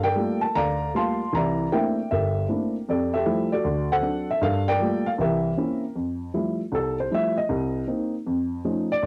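A home cassette recording in a booth with moderate ambience holds this brief, swinging and playful solo jazz excerpt in F major at 156 BPM, where a dark, mellow, woody, up-front upright piano with short sustain ranges from G1 to C6 over chords such as Gm9, C13 and C7b9, taking a solo turn from 6.0 seconds as the harmony moves through Fmaj9, Cm7 and F7b13.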